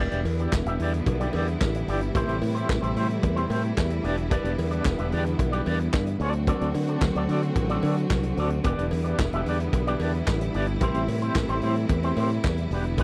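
Disco in E minor at 111 BPM, this glamorous, danceable excerpt is cut from a longer piece and moves with a straight 4/4 feel over a chord cycle of Em7, Am7 and D7. A fingered electric bass sits up front with a growly, punchy tone, and a vintage acoustic drum kit enters at 0.1 seconds with handclaps, hi-hat, a medium-tuned snare and a punchy kick, its mid-forward sound rolled off at the top. A lush, bowed string section holds sustained chords with focused, close vibrato. An electric guitar, bright and twangy, plays picked accompaniment through an envelope filter with tremolo. A metallic cowbell joins at 0.3 seconds in the background, and the whole track has the dry, intimate sound of a 1970s-style studio with a small room ambience.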